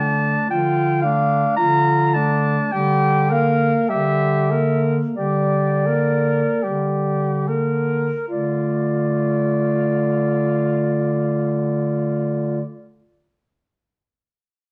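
Solemn and melancholic, this classical fragment for single-reed quartet unfolds with a rubato feel, easing back over its first 8.3 seconds. A clear clarinet carries the melody up front above a bright alto saxophone second line sung with vibrato, while a second clarinet with a smooth, warm tone supplies accompaniment and a distant, roomy bass clarinet holds the low end. A wet stone-room reverb and the worn, warbling pitch drift of old cassette tape color the sound.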